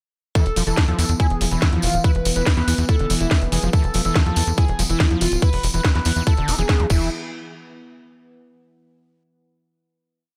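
A dark, warm production with light reverb frames this short psychedelic trance piece in E major, running at 142 BPM with a hypnotic, four-on-the-floor drive from an up-front electronic kick, a cracking snare, metallic programmed hats and a jingly hand-played tambourine, all underpinned by a punchy, wave-folded sequencer bass rolling in sixteenths. Over this, a squelchy, resonant acid line with accents and slides pumps against the kick through distortion and tape echo, while a gritty, guitar-like lead screams a repeating riff melody through chorus, phaser and delay, and a morphing, vintage wavetable pad drones in the background. The groove holds from 0.4 seconds until a final hit at 7.1 seconds rings out to the close.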